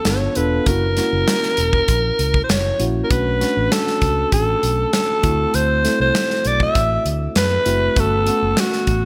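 A bright, polished 1980s-style digital production with light small-room reverb frames this slick, nocturnal slice of jazz-funk pop, cut from a longer piece and moving at 99 BPM in a straight 4/4. A breathy, raspy alto saxophone with vibrato carries the melody up front within a range of F#4 to E5, over a mellow tine electric piano bathed in lush chorus, a punchy modern drum kit with gated reverb on hi-hat, kick and snare, and a dark, round, foam-muted fingered bass. The chords pass through G9, F#7, Bm9 and D9 before settling on Gmaj9#11 at 8.0 seconds.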